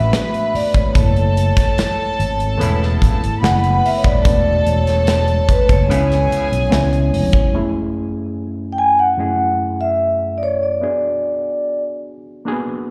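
A soft-mallet vibraphone leads this short cut from a lush, 1970s-style soul piece, its ringing, metallic tone shimmering with a slow motor vibrato and a slapback echo as it carries the melody up front from the start until about 11.8 seconds. The mood is cinematic and bittersweet, set in F# minor at a relaxed 73 BPM in straight 4/4. Beneath it, a bowed studio string section plays a floating, sul tasto second line, and an overdriven reed electric piano run through a combo amp adds gritty, reedy accompaniment with a phaser. A round, punchy fingered electric bass and a polished acoustic drum kit with a tight kick and medium-tuned snare hold the groove until about 7.5 seconds, while a tight, vintage horn section slips in with light-vibrato jazz stabs between 2.6 and 6.5 seconds. Everything sits in the ambience of a live gig heard through a venue's PA with recital-hall reverb, and the harmony moves through rich chords like E9sus4 and F#m11 before the electric piano carries on to the end at 12.9 seconds.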